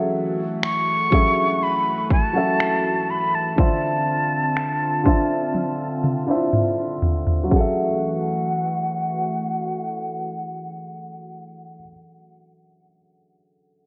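A bright, 1980s-style digital sheen sits under a lush plate reverb and a low-pass filter sweep, giving this slow, moody contemporary R&B passage its hazy glow. At 61 BPM in F# minor, a soft, felt-muted upright piano sits up front with intimate, mellow accompaniment, while a shimmering, retro pulse-width pad adds chorused, slow-attack sustain beneath, moving from F#m7 to Dm7 and back. From 0.6 seconds, a breathy jazz flute carries the longing melody high in its range, expressive and tender with vibrato and delay trailing each phrase. A trap drum kit enters at the same moment with finger snaps, toms and a hard-clipped, tape-warm kick, playing a drum fill from 5.5 seconds before the drums drop out. The pad and flute fall away at 11.8 seconds, leaving the natural-sounding piano on its own to close this fragment cut from a longer piece.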